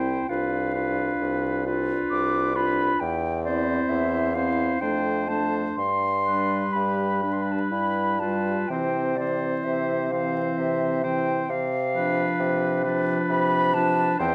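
A rubato 3/4 pulse at 60-68 BPM carries this tender, lyrical passage from a slow romantic movement for wind quintet, cut from a longer classical piece. The concert flute sings the melody with a pure, straight, tongued tone over the oboe's clear, softly attacked second line with light vibrato. A bright clarinet with a smooth top and a dark French horn with vibrato fill in the accompaniment, while an up-front bassoon with light vibrato anchors the bass. Close, detailed microphones capture a moderate recital hall reverb and a layer of vinyl crackle as the harmony moves from Bdim/C through C/E, Dm7/F and G to C before returning to Bdim/C.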